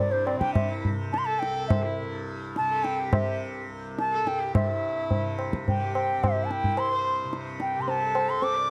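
In a straight five-beat cycle that gradually speeds up, this serene, meditative Hindustani excerpt sets an up-front, reedy bamboo bansuri melody with vibrato over a buzzing, shimmering tanpura drone and close, low-tuned tabla, while a distant, earthy sarangi traces a gliding, bowed second line ringing with sympathetic strings, the production dark with light reverb.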